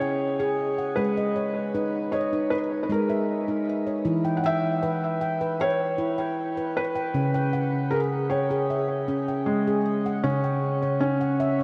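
A dreamy plate-reverb wash envelops this brief, hypnotic fragment of meditative world music, moving at a gentle 78 BPM in 4/4 with a straight feel in C# dorian. A bright, ringing stainless-steel handpan plays arpeggios with sharp finger strokes, sitting up front and slightly louder, while a soft, felt-muted upright piano carries the melody in an intimate, mellow tone with audible action noise. Both parts carry shimmer reverb and tape echo, and a new section arrives at 10.2 s before the clip ends at 11.6 s.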